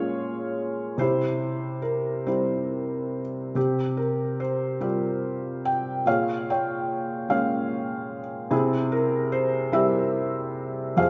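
A felt-muted upright piano plays alone from the first moment, its soft, mellow tone heard up front and close, with audible action noise adding intimacy. This brief excerpt of a melancholic, reflective classical piece moves in a slow, rubato 6/8 at 48 BPM, spanning F2 to G5 over chords that shift between Bbm7, C and Csus4. A moderate concert hall reverb gives the hushed piano a gentle sense of space through to 11.1 seconds.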